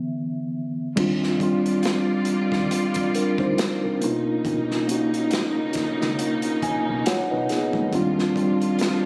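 Captured on a phone in a room with club reverb and compression, this relaxed, sensual R&B and neo-soul excerpt at 69 BPM with swung 16ths opens with a mellow tine electric piano alone, up front through its built-in speakers, before distant, veiled con sordino strings, a round, foam-muted fingered bass in the background and a gritty, saturated breakbeat kit with dark cymbals enter at 1.0 s, the piano adding a fill from 6.2 s over a Bmaj9 chord.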